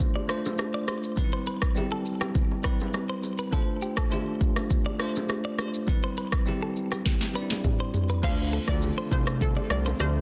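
A straight 4/4 groove at 102 BPM drives this mellow, sultry afrobeats clip in D dorian, tuned slightly low to A4 = 435 Hz. An electronic, produced afro-pop kit sits up front with a deep kick, a sharp snare with soft clipping, rim clicks, shaker, toms and crash, while bright, vintage congas and bongos played with soft hands stay in the background. A bell-like tine electric piano, clean and direct, carries the Dm7 and Cmaj7 accompaniment, joined from 0.2 seconds by a twangy, picked electric guitar riff, recorded direct and compressed, with spring reverb and digital delay. After a drum fill, the second section at 8.2 seconds brings in a fat, detuned, wave-folded analog bass up front, a round pluck melody with chorus and delay, and a very quiet, lush, airy unison pad with chorus and phaser. The sound is dry, dense and heavily limited in a modern master, and the clip is cut from a longer piece.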